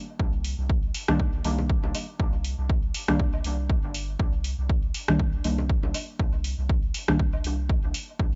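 A swung 120 BPM pulse in 4/4 drives this hazy, nocturnal dub techno excerpt in C minor, where an up-front, punchy electronic kick and a round, soft sub bass pumping under sidechain anchor a tape-warm analog drum machine's echoing hi-hat and rim click, while a deep, warbling, detuned chord stab on Cm9 enters at 1.1 seconds with chorus, phaser, cassette grit and dub echo, joined by background congas and woodblock re-recorded in a small room, all captured dry and gritty through transformer saturation with a rolled-off top.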